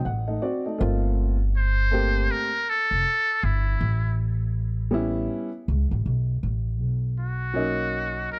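Smoky and mellow, this jazz-hop cut from a longer hip hop piece swings gently in 4/4, opening with a brief fill from a dark, smooth grand piano that then plays a vintage, short-sustained accompaniment over a woody, thumpy pizzicato upright bass on gut strings. At 1.6 seconds a trumpet with a metal mute enters as the up-front solo voice, buzzy and thin with vibrato, soft attacks and scooped notes in a jazz style, over harmony moving from D7b9 through Gm11 and A9 to Bmaj9. Studio reverb wraps the recording in a warm, shadowy production.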